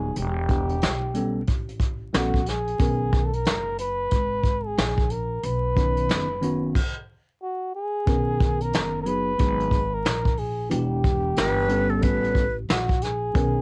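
A breathy, whispered flugelhorn carries the intimate melody up front in this relaxed jazz-hop cut at 91 BPM, swung on the sixteenths in B major, over a worn, slightly out-of-tune tine electric piano with phaser, a woody, thumpy pizzicato upright bass and a dark, brushed vintage drum kit, all pausing for a brief stop at 6.8 seconds before a mellow, unsteady silver concert flute slips in at 11.4 seconds, the whole excerpt carrying light reverb and vinyl crackle in a dull-topped home cassette recording.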